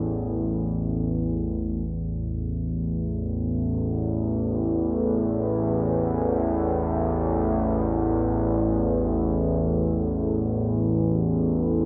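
Ambient music in free time, this short excerpt is cut from a longer piece and carries an unsettling, cavernous mood. A lone analog drone holds the whole passage from 0.0 to 11.9 seconds, sitting low between A1 and E2 and placed up front in the mix. Its tone is warbling and vintage, built from detuned sawtooth and pulse-wave sources with pulse-width modulation, and it evolves over its sustained body after a slow attack and into a long release. Chorus and delay thicken the drone, while a wet plate reverb with a 2.8-second decay soaks the dreamy mix in a deep, hazy space. The opening stretch gives way to a longer second section at 1.9 seconds, and the harmony rests on an A5 chord at the very start.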